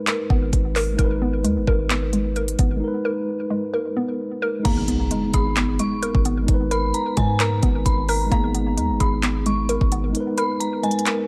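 Dry, this melancholic, menacing half-time trap excerpt sets a mellow tine electric piano and a hollow, bouncy square-wave pluck arpeggio with chorus and delay over an up-front electronic kit of knocking kick, crisp hats, handclaps and crash and a punchy, heavy 808-style bass, while an eerie, inharmonic FM bell with phaser enters at 4.6 seconds alongside a background impact, and the kick drops out at 10.1 seconds.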